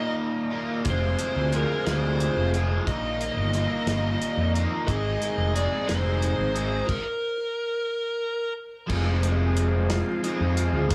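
Dark and hypnotic, this psychedelic rock excerpt moves in a slow 6/8 at 60 BPM (dotted quarters) in F minor, tuned slightly low to A4 = 439 Hz. A crunchy, bright, double-tracked electric guitar plays a riff through flanger from the start, while a fuzz lead guitar with a dark, distorted tone and tape echo carries the melody up front. A vintage combo organ holds reedy, heavily vibratoed chords in the background. A cloth-damped, thuddy drum kit with dark cymbals and a tight kick comes in around 0.8 s, joined at 0.9 s by a fuzzy, round fingered bass with overdrive, as the harmony moves from Bbsus4 through Fm to Abadd9. A stop arrives at 6.9 s, and the lead guitar falls away before the transistor combo organ takes a solo from 8.9 s over Fm, all set in light, small-room ambience.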